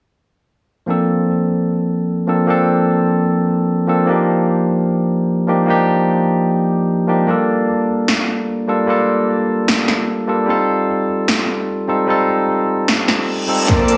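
Future bass in Bb major at 150 BPM with a half-time feel, lush and bright, this excerpt opens at 0.9 seconds with a barky, up-front tine electric piano carrying pumping, tape-echoed chords through Bbmaj7, Ebmaj7, Gm7 and F7 in a small, reverberant room. A punchy big-room dance kit with crisp hats and a tape-warm snare joins at 8.1 seconds, and a reverse cymbal and riser build into a drum fill. At 13.7 seconds a layered electronic kick, a detuned, airy supersaw stab riff with a filter pluck, and a clear, bowed studio string section with vibrato all arrive together, the stab and strings pumping under sidechain.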